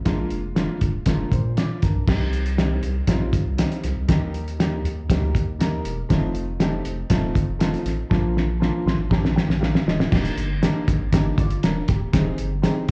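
Heard as a live gig through the venue's PA on cassette tape, with club reverb, this joyful, uplifting slice of 1960s-style soul sets an up-front, cloth-damped drum kit with a fat snare, muffled cymbals and 12-bit sampler grit over a deep, thick, saturated sine sub bass, while a woody, boxy upright piano with slapback echo accompanies, and both drums and piano fill from about 8.1 and 8.6 seconds before a fresh chord passage arrives at 10.1 seconds in this cut from a longer piece.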